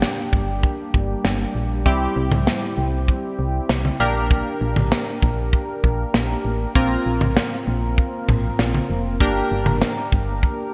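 Synth-pop with a driving, nocturnal mood, this excerpt from a longer piece sets a funky, detuned sawtooth polysynth comp, bright and up front with chorus and a filter sweep, over a punchy, round FM bass and a polished studio drum kit whose tight kick, medium-tuned snare and toms carry gated reverb, all moving from Gm through C and Bbsus2 inside a lush hall and a bright 1980s-style digital sheen.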